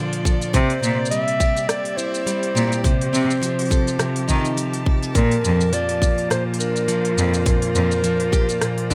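Folktronica at 104 BPM in Bb major, this short excerpt from a longer piece has a playful, delicate mood, with a gentle sixteenth-note swing. A picked plugged-in steel-string acoustic guitar opens with warm arpeggios, finger squeak audible, while a rich string quartet sustains chords underneath with soft attacks, vibrato and expressive portamento. An organic electronic drum kit brings smooth hi-hats, rim clicks and shaker, and a tight, up-front electronic kick enters at 0.3 seconds. At 0.5 seconds a dark clarinet takes the melody in a classical style, and a bright, biting cello plays the bass line with nasal, intense tone, airy bowing and vibrato. The harmony moves from Bbmaj7 through C7 and F7/C before returning to Bbmaj7, all set in a small room reverb.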